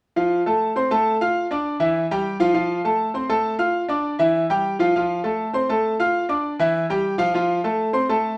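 Latin piano at a driving 201 BPM in straight 4/4, this fiery snippet from a longer piece features a solo grand piano spanning E3 to F6, its brilliant, vintage tone smooth with long sustain and placed up front. The harmony cycles through F, Dm and Em, returning to F each time, across roughly 8 seconds. A moderate stone room reverb gives the sound the feel of a band playing live in one space.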